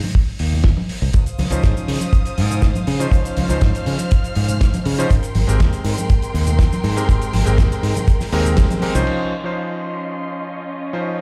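Played back through a big sound system in a bare stone room, this sunny, feel-good nu-disco excerpt at 121 BPM rides an up-front tight kick and a direct, bright fingered electric bass, with soft-handed congas and cabasa tucked in the background, a damped 70s kit of dark cymbals and fat snare under low-pass filtering, a cutting, clangy vintage electric grand piano with analog delay and sidechain pumping entering at 1.5 seconds, and a distant, vibrato-rich bowed violin section holding sustained chords over Dbmaj9 and Abmaj9 before a band accent at 8.6 seconds and a filter sweep on the drums from 9.1 seconds.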